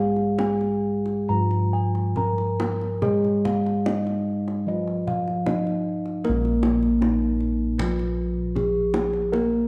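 Serene and shimmering, this Javanese gamelan excerpt in Bb slendro moves at 65-78 BPM in 4/4, with a soft, padded bronze metallophone carrying the melody over a mid-forward second metallophone's accompaniment, bright, beating bossed gongs up front spinning arpeggios until 5.9 s, mellow bossed gongs with a boxy small-room tone anchoring the bass, and a tight, band-limited kendang struck with hard hands, the ensemble sitting in a moderate recital-hall reverb within a dark production.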